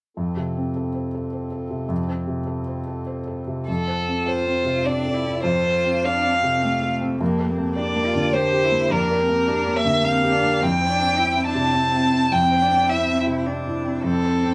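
Set in a single live room with a moist reverb and a soft, rounded top end, this hopeful, tender neoclassical piece in F major moves in a rubato 3/4 at 104 BPM. A felt-muted upright piano sits up front with a mellow, intimate tone and audible action noise, while a reedy, breathing harmonium holds sustained chords in the background from 0.2 s. A smooth, warm violin with vibrato enters on the melody at 3.7 s, and a rich, focused bowed cello adds a second line at 4.3 s as the harmony moves from F through Gmadd9/F to C/F.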